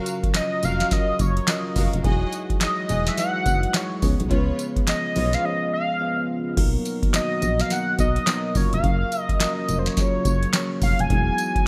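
A swung sixteenth-note groove in 4/4 drives this bouncy, upbeat stretch of new jack swing R&B, cut from a longer piece. A booming analog drum machine sits up front with a deep kick, crisp snare, handclaps, metallic hi-hats, tambourine and crash cymbal, the snare, clap and hats carrying a short room sound. A punchy, round FM bass with a fast attack and dark decay anchors the low end, while a bell-like tine electric piano with subtle chorus plays clean accompaniment over a shimmering pulse-width pad that holds soft, sustained chords in the background. A bold, octave-doubled lead, detuned and bright with chorus and phaser, carries the melody from 0.4 seconds. A lush studio string section adds distant, expressive stabs with vibrato, portamento and digital delay until 5.4 seconds, where a brief break occurs before the phrase repeats over moving seventh and ninth chords, all set in a moderate hall reverb with bright 1980s-style digital production.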